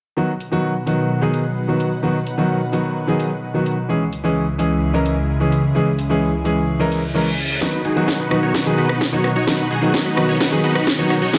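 A straight 4/4 pulse at 129 BPM drives this euphoric, triumphant festival progressive house excerpt in B major, where an up-front house kit with cracking snare, metallic hats and rim clicks, overdriven and re-recorded in a large room, arrives at 0.4 seconds beneath a clear, intimate grand piano whose action noise is audible and whose chords pump with sidechain and dub echo, moving from B to C#m. A lush, detuned unison pad with chorus and phaser swells in slowly behind them, and a very quiet reverse cymbal and riser lead into a build-up at 7.6 seconds. There a huge, bright supersaw riff with 12-bit grit and a filter sweep joins the mix alongside a very quiet, punchy kick and a drum fill, all set in a moderate hall reverb.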